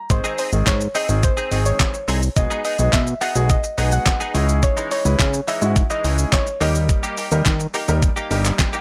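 A dry, gritty hardware recording with digital ambience carries this energetic, confident dance-pop excerpt in a straight 4/4. A thumpy, sampler-style 8-bit drum machine with handclaps, hi-hat, kick, shaker and snare sits up front next to a fat, saturated analog bass, while the bass and a clear, polished baby grand piano both pump under sidechain, and a twangy, scooped direct-recorded electric guitar plays a riff through ensemble chorus. Over chords moving through G#, B6, C#madd9 and D#, a soft, round pluck carries the melody with chorus and tape echo, and the piano closes with a fill from 8.0 to 8.8 seconds.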